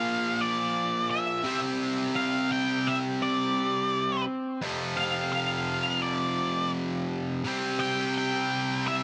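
An octave-fuzz lead guitar, dark and picked, carries the melody from D5 to G5 over a bright, double-tracked overdriven electric guitar riff sitting up front from F2 to C4, both playing from 0.0 to 9.0 seconds in this anthemic, bittersweet rock cut at 85 BPM in C major, moving through Bb, Csus2, F5 and C5 under light reverb.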